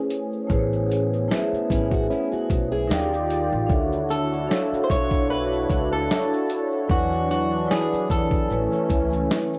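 Vibraphone and a soft, detuned analog pad open this cosy, nostalgic lo-fi hip hop excerpt at 75 BPM in A major, the mallets ringing metallic and up front over the pad's smooth, chorused sawtooth chords. A gritty, compressed sampler-style drum kit with a thumpy kick and medium-tuned snare comes in almost at once, joined by a grainy egg shaker sitting in the background and a woody, dark pizzicato upright bass from 0.5 seconds, all with a gentle 16th-note swing. A bright, fingerpicked nylon-string guitar adds a brief second line colored by tape echo between 1.7 and 3.1 seconds. From 4.1 seconds an electric guitar through a small old amp, slightly broken-up and bathed in spring reverb, carries the melody. The harmony drifts through lush major-ninth chords, shifting from Amaj9 to D#maj9 and Dmaj9 before an E13 resolves to Amaj7. Cassette tape saturation and light reverb give the whole home-recorded sound a worn, intimate character.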